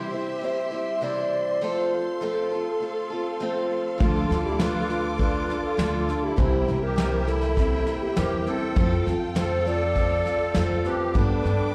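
A straight 4/4 pulse at 101 BPM carries this pastoral, peaceful acoustic folk piece, cut from a longer performance. From the start, a mellow wooden-headed alto flute sings the melody with pure tone, vibrato and a soft attack, sitting at a distance. An up-front, boxy parlour steel-string guitar picks the accompaniment on fresh strings, and a warm chamber string section holds bowed chords with portamento and expressive vibrato. At 4.0 s the rest of the group joins: a dark, growly pizzicato upright bass sits up front, a soft brush kit adds a tight kick and medium-tuned snare, a reedy, shimmering musette accordion plays a second line, and a woody, slightly detuned upright piano spins arpeggios in the background as the chords move from C and F through Dm and C7 toward G. It sounds like a live gig heard through the venue's PA, with moderate club reverb and recital hall ambience. Plate reverb touches the flute, guitar, strings, accordion and piano, slapback echo colours the flute, guitar, accordion and piano, and the flute also carries tape echo.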